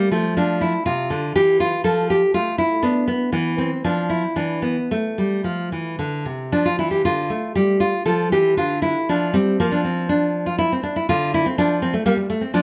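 Flowing and solemn, this short passage from a longer classical piece is a baroque-style dance for solo nylon-string guitar in 3/4, moving with a rubato feel between roughly 108 and 124 BPM. The guitar plays alone from start to finish, fingerpicked and placed up front, its dark, deep tone ranging from C3 to A4. The music begins in A minor and turns toward D minor at 6.5 seconds, where the opening material returns. The harmony moves through D minor, an Fmaj9#11 colour and A minor, with brief stretches outside any defined chord before settling on a Dm11 near 11.1 seconds. Close, detailed microphones catch the acoustic instrument intimately, while a moderate recital-hall reverb lends a sense of space around it.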